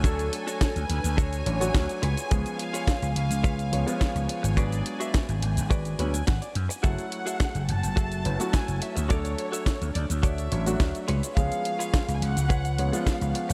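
Set in light reverb and studio ambience, this sleek, groovy nu-disco excerpt at 106 BPM rides a dry, tight, up-front kick and a punchy, amped slap bass with sidechain pumping, while a produced house kit with a cracking snare, hi-hat and shaker keeps time, a recorded-direct clean electric guitar plays a compressed picked riff with subtle chorus and delay and adds a fill from 5.7 to 6.8 seconds, a grand piano with audible action noise and short sustain accompanies through delay, a distant, smooth studio string section holds sustained chords with sidechain pumping until 6.8 seconds, and a dark, woody chamber violin section carries the melody through tape echo over chords moving from Dmaj7 through C#7, G#m7b5 and F#m9.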